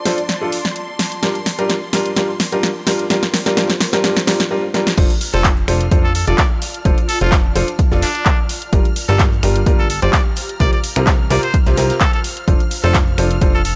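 Feel-good and euphoric, this piano house excerpt at 128 BPM in F major opens with a clear, woody upright piano riff and punchy house drums, their snare and bright hats sitting up front, over shimmering vintage string-machine chords and a very quiet, ethereal pad, with a drum fill leading into a short break at 4.5 seconds. At 5.0 seconds the drop arrives with an overdriven electronic kick, a funky, plucky analog bass, and faint brushed drums, and a nasal, muted trumpet carries the melody from 5.3 seconds. The bass, piano and strings pump with sidechain compression, and the dry, gritty recording sits in a small room with light reverb.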